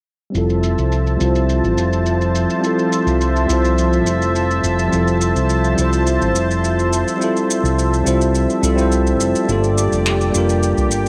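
A straight 4/4 groove carries this smooth, sunny sunset chillout excerpt, with a round, punchy fingered electric bass sitting up front beneath quieter layered, overdriven electronic shaker and finger snaps. A bell-like tine electric piano, clean and direct, plays accompaniment through a filter sweep and tape echo, over a thick, detuned unison pad whose slow-attack sawtooth and square-wave chords are treated with chorus. The harmony rests on Fmaj7 before moving to Gm7 at 9.5 seconds, set in light reverb and digital ambience.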